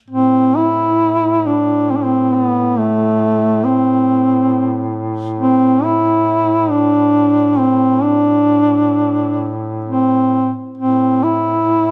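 Mournful and solemn, this short cut from a longer Caucasian folk lament moves at a rubato 67 BPM in an unevenly felt 3/4 in A minor, with a dark, up-front duduk singing the melody between A3 and E4 in a folk style full of vibrato and scooped notes over a quieter, mellow, vintage-toned second duduk holding a drone on A2 with its own vibrato and scoops, all set in a moderate recital hall reverb.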